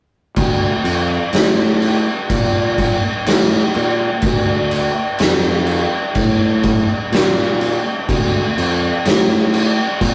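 At 0.4 s a fuzz-drenched, fingered electric bass and an oversized, low-tuned drum kit start together, laying down a brooding, sludgy stretch of stoner and doom metal in D minor. The tempo crawls at 62 BPM in a straight 4/4. The bass sits between D2 and Bb2, its overdriven tone growly and punchy, with a bright, direct amped edge. The drums stand up front, with a punchy kick, a fat snare and dark crash cymbals, their sound gritty and saturated, as if played in a bright stone room. The rough rehearsal-room recording carries warm saturation and very little reverb, and this short section, cut from a longer piece, ends at 10.1 s.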